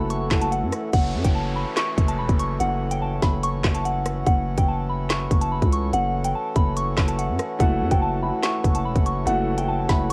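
A half-time drill groove at 144 BPM drives this tense, ominous hip hop excerpt in F# minor, with an up-front electronic kit of hard-clipped kick, woody snare, crisp hats, rim clicks, handclaps and crash, all tinted by cassette tape, alongside a growling, buzzy 808-style bass. Above a reedy, breathing harmonium holding an F#m7 chord, a soft FM synth bell carries a pure, gentle melody through chorus, phaser and cassette tape coloring. A dark baby grand piano with long sustain sounds briefly at the start, drops out at 1.0 seconds and returns at 7.6 seconds, while a background downlifter passes early on in this dry, lo-fi home cassette recording.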